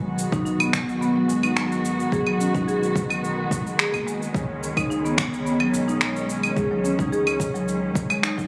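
Organic downtempo at 108 BPM in 4/4, this mystical, hypnotic excerpt from a longer piece moves from B6 to C#sus2 as a woody marimba with rosewood bars spins arpeggios through digital delay and shimmer reverb, over dark, veiled muted strings that hold sustained chords with vibrato and sidechain pumping. A round sine sub bass sits deep in the background, also pumping, until 7.9 s, while overdriven electronic cabasa, claves and finger snaps come in up front at 0.2 s and a deep, overdriven electronic kick joins at 0.3 s. The sound carries scoring-stage and club reverb with small room ambience and compression, as if captured on a phone in the room.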